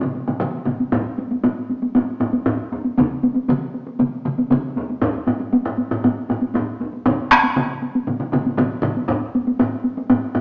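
The recording sounds like a group playing live in a stone room, with a wet reverb that lingers about 1.3 seconds and a small-speaker character. This is Japanese traditional taiko drumming at 118 BPM in a straight 4/4, ceremonial and powerful in mood, and it is cut from a longer piece. Three taiko parts are struck with hard sticks and sit up front. One is miked close, one has a vintage, band-limited tone, and the loudest of the group sounds dry and near. The fourth taiko, played with heavy sticks, is the quietest and shares that aged, narrow-band color, joining at 0.9 seconds and dropping out at 9.2 seconds.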